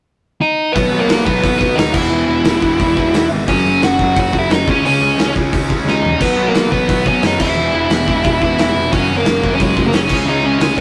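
Rowdy, energetic punk rock at 176 BPM in B major, this excerpt opens with a dark, smooth overdriven lead guitar carrying the melody from 0.4 s, joined by 0.8 s by three bright rhythm guitars (two distorted, one double-tracked and cranked, all set back and quiet), a growly fuzz-driven picked bass and a loose, up-front acoustic drum kit with a tight kick and pumping room sound that throws a fill at 5.9 s, all captured in a rough rehearsal-room recording with stone-room reverb and saturation over a B, E5, F#5, C#5 progression.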